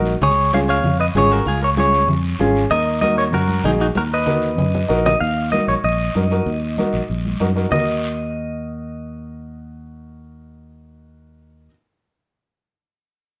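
A bright, twangy clean electric guitar leads this fiery, driving cumbia fragment, its picked, compressed melody sitting up front with a touch of spring reverb. It moves at a brisk 192 BPM in a straight 4/4 feel, centered on Eb minor, with harmony shifting from Db to Eb minor. Beneath it, a woody upright piano supplies intimate accompaniment, its action noise audible. A round, fingered electric bass holds the low end, direct, amped and close in the mix. A raspy guiro and ringing, medium-tuned congas, the latter dry and set back, drive the groove until 7.8 s, after which the guitar, piano and bass carry on through a moderate studio ambience to the end of this excerpt from a longer piece.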